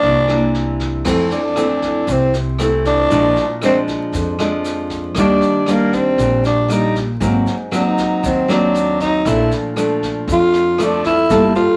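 Over a vinyl crackle, a growling, raspy tenor saxophone and a fingerpicked nylon-string guitar sit up front from the start, with woody pizzicato upright bass and a brushed vintage drum kit with dark cymbals beneath them, in a relaxed, sunny bossa nova fragment set in moderate studio reverb, where the saxophone solo begins at 1.1 seconds as a grainy tube shaker slips into the background over chords moving from C9 through Fmaj7 and Ab9 to Bbmaj7.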